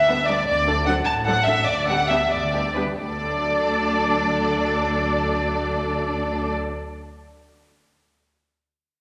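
Quick classical-period string orchestra movement in D major and 6/8, spirited and graceful at 86-104 BPM in dotted quarters, easing slower through the first 3.0 seconds as harmony moves from D7 to G/D and settles on D, with an up-front, lush violin section carrying the melody with vibrato and portamento, a second violin section adding a soft-edged line beneath, violas supplying smooth, even accompaniment, and dark cellos alongside a rich double bass section sitting in the background grounding the bass, all set in the wet ambience of a scoring stage.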